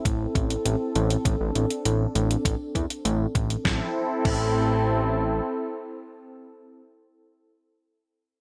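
This nocturnal, nostalgic synthwave excerpt in A minor moves at 100 BPM in a straight 4/4, opening on an Am chord held by a brassy, detuned sawtooth pad with chorus, vibrato and sidechain pumping, its filter sweeping until 3.7 seconds. A thick analog bass, also pumping, sits up front until 5.4 seconds. A clean 12-bit drum machine with crash cymbal, hi-hat and a fat, gated-reverb snare plays over a thumpy, tape-tinged electronic kick until 4.4 seconds, all framed by moderate plate reverb and bright 1980s-style digital production.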